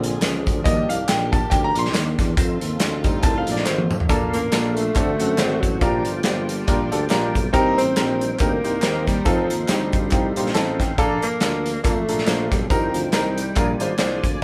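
A swung 4/4 groove at 140 BPM drives this jubilant yet reverent uptempo gospel excerpt in Bb major, with a punchy, up-front acoustic drum kit, a mellow, distant tuba on the bass line, background tambourine, egg shaker and group handclaps, and a drum fill at 3.7 seconds closing the opening stretch. A clear, intimate concert grand piano with audible action noise takes a solo through the first 4.1 seconds, later adding a fill at 10.1 seconds, while a fat, percussive tonewheel organ with key click and slow rotary speaker and a very quiet, dark, reedy string section hold sustained chords behind it. From 4.3 seconds a smooth alto saxophone takes the melody in a jazz style, with vibrato, subtone and scooped notes, over chords moving from Bbmaj7 through D7, Gm7, Cm7 and F7, all in a lightly reverberant room where the band plays live together.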